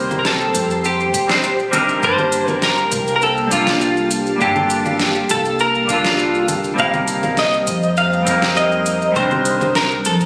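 Sunset chillout in C dorian at 101 BPM in a straight 4/4, this short excerpt feels wistful and warm as it moves from Cm7 to Gm9 at 2.0 seconds and back to Cm7 at 6.8 seconds. Two clean, picked electric guitars sit up front: the twangy lead carries the melody through analog chorus and digital delay, while a compressed second guitar supplies accompaniment with its own digital delay. Beneath them an ethereal, airy pad holds sustained chords with a slow attack and long release, its detuned sawtooth tone and noise layer brightened by ensemble chorus, built-in reverb and phaser. A woody, dark pizzicato upright bass anchors the low end, and a produced R&B kit with a deep snare, metallic hats, congas and shaker rides on studio reverb. A knocking electronic kick joins in the background at 1.1 seconds, and the whole piece sits in a moderate plate reverb with the intimate character of a phone recording made in the room.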